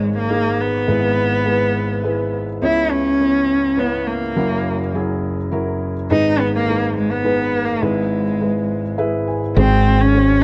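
Heard through light reverb and the worn, warbling pitch drift of old cassette tape, this short cut from a longer acoustic folk-pop ballad moves at 104 BPM in a straight 3/4, with a heartbroken, reflective mood. A bowed cello carries the melody up front from the start, its soft attack, vibrato and portamento giving the single player an expressive, singing voice between G#3 and E4. Beside it, a felt-muted upright piano plays the accompaniment across a broad span from F#1 to G#5, mellow and intimate, with audible action noise that lends it a vintage closeness. The harmony circles through G#m, E/G#, C#m7 and F#7 before returning to G#m and E/G#. At 9.6 seconds a woody fretless electric bass enters on a dark, round, punchy G#1 just as the chord turns to G#7, and the passage ends at 10.4 seconds.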